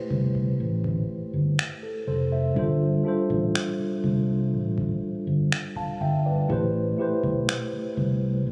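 A dark, round fingered electric bass sits up front in this moody, late-night contemporary R&B piece, playing low notes in A minor at a slow 61 BPM in 4/4. A mellow, clean tine electric piano, heard through its built-in speakers, carries the Am7 to G9sus4 to Am7 changes, while a booming analog drum machine adds finger snaps and a deep kick. The piece sounds as if it was captured on a phone in the room, with compression and club reverb.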